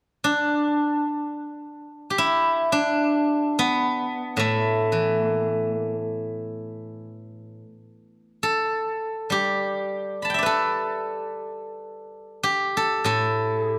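Elegant and pastoral, this short fragment of a longer piece is Chinese traditional music for solo plucked strings. A steel-string zither carries it alone from 0.2 s to 13.8 s, sounding bright and silvery as it is played with fingerpicks. Its notes ring out across a span from A2 up to B5, placed up front in the sound. A light reverb gives the acoustic instrument a gentle sense of space, and the tuning sits at A4 = 441 Hz.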